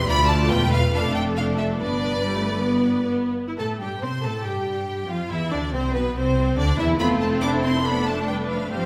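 A quick classical-period movement for string orchestra at 140 BPM in C major, this stormy, urgent fragment of a longer piece moves through D minor and G before opening onto C and F harmony at 3.6 seconds. A bright, intense violin section carries the melody with vibrato over a clear, more distant second violin line and rich violas. Beneath them, smooth, even cellos and lush double basses anchor the bass, all wrapped in a wet recital-hall reverb.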